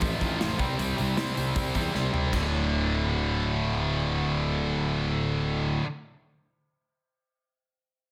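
A straight 4/4 pulse at 155 BPM drives this short, heavy and aggressive hard rock clip in D minor. A big acoustic rock kit with a punchy kick, medium-tuned snare, toms, hi-hat and bright crashing cymbals, recorded in a big room, plays a drum fill at 1.9 seconds and drops out at 2.4 seconds. Two picked electric guitars carry the riff up front: one is scooped and high-gain, the other tight and distorted, and both are bright. Beneath them, a fuzz-laden picked electric bass adds a dark, round, overdriven low end. The harmony moves from F/A to C5, then settles on D5 at 2.3 seconds as the riff shifts into a new section, all set in light studio reverb.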